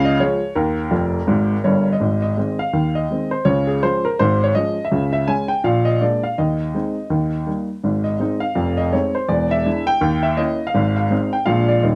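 Stride jazz with a playful, swinging lilt, this short cut from a longer piece features a lone baby grand piano, worn and open with long sustain, placed up front in a moderate club reverb and captured by close, detailed microphones, spanning E1 to Ab5 and offering a brief fill from 0.9 to 2.0 seconds.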